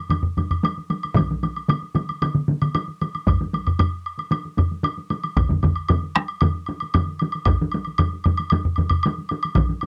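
Ceremonial and powerful, this short cut from a longer piece is a Japanese traditional taiko drum ensemble in a straight 4/4 feel. A solo taiko part struck with heavy sticks sits close, dry and up front, playing from 0.1 seconds until it stops at 9.0 seconds. Alongside it, one taiko ensemble played with hard sticks sounds from a small room, while a woody woodblock rings in a live room, both running through the whole passage. At 1.2 seconds two more taiko ensembles join, one with heavy sticks heard close and the other with hard sticks, close and dry, thickening the drumming. The sound is dry and gritty, colored by transformer saturation and cassette tape, with little reverb around the pounding drums.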